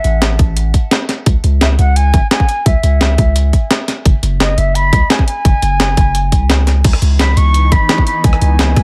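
Lush and soulful, this short cut from a longer liquid drum and bass piece sets a pure, straight-toned concert flute melody, roughened by vintage 12-bit sampler grit and analog delay, over a deep, sine-like 808-style bass, a compressed, pitched-up breakbeat kit of crash, hi-hat, rim click and snare, a tight, overdriven electronic kick that joins at 0.4 seconds, and a thick, detuned unison pad with chorus and phaser that arrives at 7.1 seconds, all set in a dry yet echo-heavy mix.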